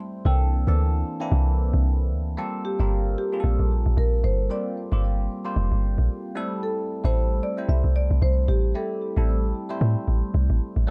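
Soulful and hypnotic, this amapiano excerpt moves at 113 BPM in 4/4 with a 58% swing on the 16ths, set in G dorian and tuned to A4 = 439 Hz. A deep log drum bass sits up front, its round, percussive FM tone carrying a noise layer with a fast attack and decaying body. It arrives at 0.3 seconds on a C13 chord during the opening drop. Above it, a bell-like tine electric piano supplies bright, clean, direct accompaniment through a phaser, shifting to Gm11 at 2.4 seconds as the second section begins and later to Am7. The melody comes from a marimba with soft mallets on rosewood bars, woody, mellow and mid-forward, fed into a digital delay, and it stops at 9.8 seconds while piano and bass carry on. Studio ambience frames the mix in a dark, warm production.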